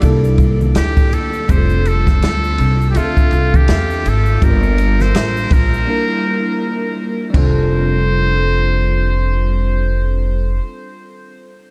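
Jazz-hop at 82 BPM in F major with a cool, smooth swing, this dreamy reverb-soaked fragment sets a buzzy, breathy muted trumpet melody with delay over bell-like electric piano through a phaser, a woody pizzicato upright bass up front, an airy jazz kit with dark cymbals and a boomy kick that drops out at 7.5 seconds, and very quiet shaker and congas that stop at 7.7 seconds, moving from C13 through Dm9 and Gm9 to a Gm6 break before settling on F69.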